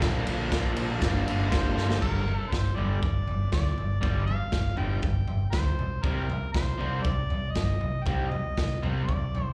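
A crunchy, double-tracked overdriven guitar riff with slapback echo opens this swaggering, gritty garage rock excerpt in G minor at 119 BPM together with a round, punchy picked bass and a saturated, boomy drum kit with dark cymbals and a rolled-off top, heard as a live gig through the venue's PA in a small, pumping club room. A mellow harmonica carrying scooped notes, overdrive, slapback and tape echo takes the vintage-toned melody from 1.5 seconds, just before a drum fill at 1.8 seconds, as the chords move from Bb and Gm to G5 and later Cm. The guitar drops out at 9.0 seconds while the bass, drums and harmonica carry on.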